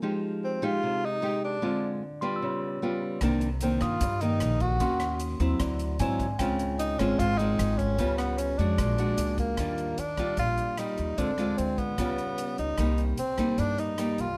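This bossa nova passage, cut from a longer piece, sits in a moderate small-room reverb that keeps the sound intimate. A fingerpicked nylon-string guitar, warm and up front with audible finger squeak, carries the accompaniment from the start. Over it, a breathy tenor saxophone takes the solo melody in a mellow jazz style, with subtone, vibrato and scooped notes. A bright, clean tine electric piano sits in the background from 2.2 s until 8.0 s. At 3.2 s a woody pizzicato upright bass on steel strings enters alongside a polished, airy swinging big-band drum kit with hi-hat, rim click and a punchy kick drum. Rich harmony such as Fm9, Db7#11 and Bb7alt gives the romantic, sophisticated mood its shading before the music settles onto Ebmaj9 for a new section.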